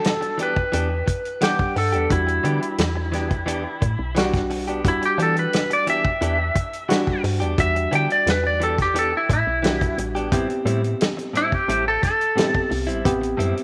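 Straight-eighth soul blues at 88 BPM in E minor, smoky and mournful, with a twangy, compressed lap steel singing the melody up front through slide and volume swells, over a barky, reedy electric piano, a dry, tight-kicked soul drum kit, bright direct-recorded electric guitar stabs washed in spring reverb, and a woody, round FM bass entering at 0.7 seconds, all in a moderate echo-chamber space as the harmony moves from Em7 to Am7 at 10.3 seconds.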